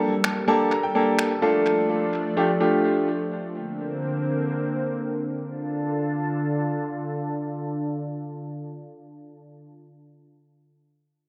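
Bittersweet yet confident, this short dance-pop cut sits at 127 BPM in a straight 4/4 and D minor, tuned slightly sharp of standard pitch. A clear, open baby grand piano carries the accompaniment up front with long sustain, softened by a low-pass filter and tape echo, and adds a fill near the start before it stops at 3.1 s. Beneath it, a lush, thick pad of detuned sawtooth and square waves in unison holds sustained chords with a slow attack and long release, its chorus lending a vintage warble as it plays on alone until 9.6 s. Layered electronic finger snaps with tape echo flicker briefly at the top, alongside a very quiet downlifter. A filter sweep runs through the opening, and the harmony moves from Gmadd9 to Dm and Bbadd9 before settling back on Dm, all set in a spring-reverb ambience that makes the mix echo-heavy.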